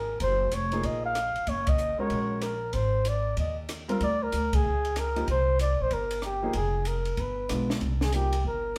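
A breathy, mellow flugelhorn carries the melody up front over woody pizzicato upright bass in this cool, moody small-group swing fragment, with a dry cocktail drum kit of dark cymbals, high-tuned snare and punchy kick and a present grand piano accompanying from 0.7 seconds, the band hitting accents together at 1.6 and 4.5 seconds in the moderate reverb of a shared room.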